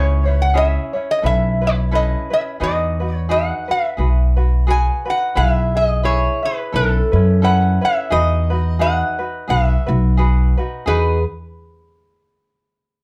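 Languid and relaxed, this lightly swung Hawaiian passage, cut from a longer piece, sets an up-front, nasal, metallic resonator slide guitar with slapback echo and plate reverb over a light, fingerpicked tenor ukulele and a woody, growly pizzicato upright bass, with a full-bodied, fingerpicked steel-string acoustic guitar slipping in at 10.9 s, all within a dark, warm production.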